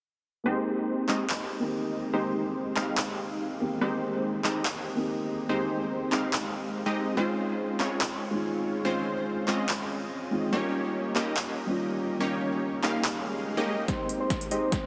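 A felt-muted upright piano, soft and boxy, opens this lush, bright future bass passage in Ab major at 143 BPM with a half-time feel, joined at once by a punchy, detuned supersaw stab riff, both pumping against the sidechain and opening up through long filter sweeps with delay over Abmaj7, Dbmaj7 and Eb7 chords. A big-room dance kit of crisp hats, handclaps and an overdriven snare drives the groove up front from 1.1 s, with a huge ambient reverb surrounding it in a dense, heavily limited master. An electronic swell and riser builds from 13.2 s, and at 13.9 s a drum fill lands as a punchy overdriven kick, a round octave-layered synth lead with chorus, vibrato and 12-bit sampler grit, and a very quiet, breathy pad arrive on a return to Abmaj7, just before the fragment cuts off.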